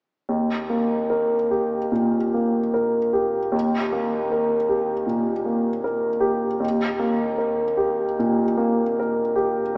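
Lyrical and passionate, this classical fragment, cut from a longer piece in Eb major at 76 BPM with a rubato feel, features a clear, intimate grand piano carrying the melody from Eb2 to Bb4 between 0.3 and 9.8 seconds, its polished, up-front tone revealing audible action noise as a long, wet church reverb blooms around it through a small-speaker sound.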